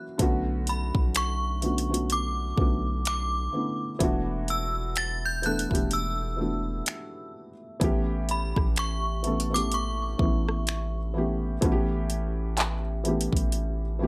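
A slow 63 BPM groove in 4/4 with a swung sixteenth-note feel sets up this moody, sensual contemporary R&B fragment, built on a punchy, tape-tinged pop drum kit of finger snaps, handclaps, metallic hi-hat, kick drum and rim click, alongside a deep, sine-like 808-style bass whose long notes strike quickly and then decay. A felt-muted upright piano supplies dark, intimate accompaniment with soft, short-sustaining tones and audible action noise, moving through Bm7, E7sus4 and A7. From 0.7 seconds a high, inharmonic FM synth chime carries the melody with a ringing, full-bodied tone, thickened by ensemble chorus and digital delay, until it drops out at 11.1 seconds, all set in a light reverb.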